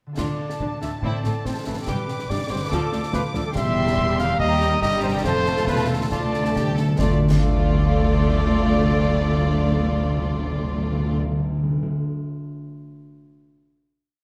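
Up-front timpani, played with medium mallets, joins the opening of this swashbuckling, determined piece of heroic adventure film scoring with single strokes on bass notes. It drops out after 1.6 seconds and returns with a fill at 6.1 s that carries through to the close. High violins carry a lush, vibrato-rich melody, while a second violin line and a distant, focused viola section drive a rhythmic ostinato in chords that follow the rhythm of the tune. Beneath them, an expressive chamber cello section with soft attack and portamento plays a driving bass ostinato, doubled in the background by a dark, woody double bass section. A close-miked, classical-style trumpet adds stabs over the strings, and a very quiet, ringing harp plays rolled chords and arpeggios throughout. A marching snare over bass drum on the beat, with bright clash cymbals, pushes the theme until 7.4 s as the orchestra settles onto a final chord in a moderate scoring stage reverb.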